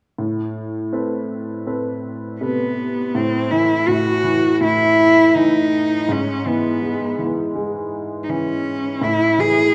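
Acoustic folk-pop ballad at 82 BPM in a straight 4/4, hopeful and intimate in mood, cut from a longer piece and tuned slightly below standard pitch. A clear upright piano opens at 0.2 seconds as accompaniment, its woody, worn tone a little detuned and placed up front. A single bowed cello takes the melody from 2.4 seconds, focused and smooth at the top, with vibrato and a close, forward presence that sits above the piano in level. The harmony moves from Amadd9 through A5 and E6/G# before returning to A5, with the second section beginning at 3.1 seconds. A wet scoring-stage reverb with a 1.6-second decay surrounds the pair, giving the small duet a spacious, glowing setting.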